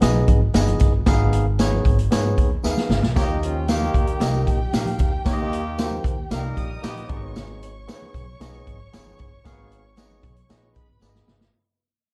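A worn, lightly overdriven electric piano, thumpy pizzicato upright bass, a roomy drum kit with a boomy kick, very quiet congas and a jingly tambourine open this joyful, uptempo 1960s-style soul cut at 114 BPM, fading throughout as the harmony moves from Abm to Eb and back, with a drum fill at 2.6 seconds leading into dark, bowed violins and a distant horn section with light vibrato at 3.2 seconds, before the horns drop away at 7.2 seconds in a lossy small-room mix.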